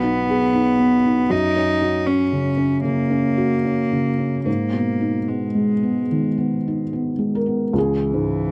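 In a rubato 4/4 pulse, this short neoclassical passage for piano and strings feels reflective and longing, cut from a longer piece. A felt-muted upright piano carries the accompaniment from 0.0 to 8.5 seconds, its thick felt giving a mellow, dark, intimate tone with audible action noise, while a single bowed cello plays a second line sul tasto, pure and floating with a soft attack. Both sit up front in a dry, close recording with a 1970s studio character, moving through harmonies that settle on a minor chord near the end.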